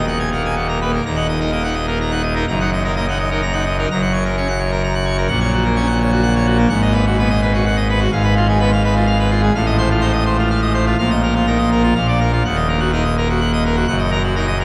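A cavernous cathedral reverb with a 6.6-second decay surrounds this brief fragment of a longer classical organ toccata. A solo pipe organ on full organ, with bright mixtures and a baroque voicing, sits up front and spans from Eb1 to Bb5. The music moves at 126 BPM in a straight 3/4, in Eb minor and tuned to A4 = 441 Hz, with a majestic, jubilant character. The harmony begins on Eb minor and passes through Gb, Abm7, a diminished chord over Ab and F7/A before arriving on a Bbsus4 that resolves to Bb at 12.0 seconds. The home chord returns at 12.4 seconds, and the passage is cut off at 14.6 seconds.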